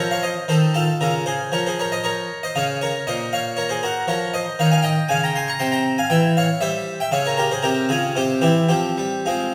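Solemn and introspective, this classical passage is a baroque-style suite movement in triple metre, cut from a longer piece and played with a flexible, rubato feel. A solo harpsichord in the French style carries everything from 0.0 to 9.5 seconds, its plucked tone brilliant and reinforced by octave strings that give each note a ringing doubled edge. The instrument sits up front, spanning a range from deep bass notes to bright upper registers. Its harmony moves through somber minor chords and leans toward a new tonal center around 4.1 seconds, with a half-diminished chord and dominant chords drawing the line toward a final minor resolution. The recital hall reverb is wet and lingering, lending the sound the resonant bloom of a church or concert hall.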